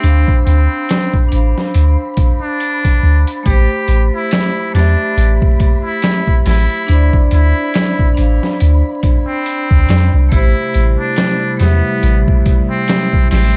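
A dry, close sound sits under a constant bed of vinyl crackle in this melancholic, dark trip hop fragment, cut from a longer piece and moving at 70 BPM in 4/4 with a lazy 16th-note swing in A minor. Up front, a gritty, pitched-down sampler-style drum kit of thumpy kick, medium-tuned snare and hi-hat sounds compressed and re-recorded in a small room, while a soft 808-style bass adds deep, round sine tones with a fast attack that then decay. Over a slow alternation of Dm7 and Am7, a trumpet with a metal mute carries the jazz-style solo melody, buzzy, thin and whispered, with tape echo trailing its intimate phrases. A vibraphone struck with hard mallets plays the accompaniment, its metallic, ringing tones pulsing through a harmonic tremolo in a boxy room. Far in the background, an airy, wind-like tuned noise texture hovers with its own reverb, and at 10.6 seconds a warbling, detuned tape-like pad enters with nostalgic, lo-fi chords, softened by chorus and a long release.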